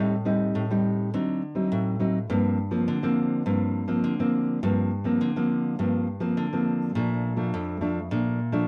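A warm, up-front nylon-string guitar plays alone in this yearning yet lively samba excerpt in G minor at 103 BPM, its thumb-plucked classical tone moving from Am7b5 through D7b9 to Gm7 before shifting to Bbmaj7 at 6.9 seconds, all set in a moderate studio room and coloured by worn cassette tape with warbly pitch drift.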